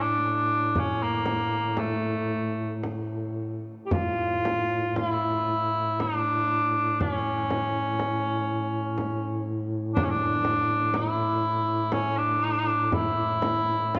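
Set in a slow, rubato three-beat metre, this solemn, mournful Caucasian folk lament is cut from a longer piece and runs about 14 seconds. A mellow cor anglais carries the melody in a classical style, sounding distant and roomy, while a duduk holds a low drone with vibrato, its tone punchy and close-miked as it sits up front in a folk style. A frame drum enters at 0.8 s, played with hard hands and heard in a small room with an acoustic character. The music moves into a new section at 3.9 s. A heavy church reverb washes over the whole, and a worn, warbling cassette quality adds a drifting, unsteady pitch.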